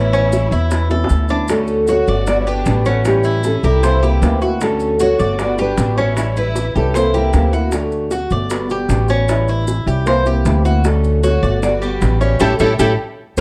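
Cuban son and guajira at a brisk 154 BPM in D major, this sunny fragment from a longer piece sets a thumb-plucked nylon-string guitar melody over a lush bowed violin section with portamento in the background, both touched by slapback echo, while a boxy, fingerpicked ladder-braced acoustic guitar, metallic double-strung tres arpeggios and a woody, thumpy gut-string upright bass up front carry a Dmaj7–Gmaj7–A7–C7 cycle, with tight high-tuned bongos and grainy maracas behind, a drum fill at 0.9 seconds, a pause in the melody and strings before they return near 10.8 seconds, and a band accent closing at 12.4 seconds in a dark production with light reverb.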